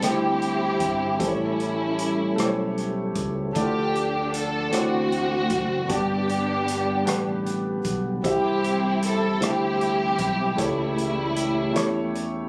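A slow 6/8 gospel pulse at 51 BPM, felt in dotted quarters, carries this soulful, uplifting C major excerpt, with a swinging big-band drum kit marking time on hi-hat, rim click and a punchy kick while a growly fingered electric bass anchors the low end. Up front, a dark, lush string section sings the bowed melody with vibrato over a woody upright piano whose action noise and slight detuning lend intimacy, as a mellow, flute-like tonewheel organ holds chords in the background through a slow rotary speaker and chorus vibrato. The whole is heard as if caught on a phone in a club, with light reverb and compression, moving through C, A7, Dm, D9 and G, back to C, before turning to A7/C# at 10.6 seconds.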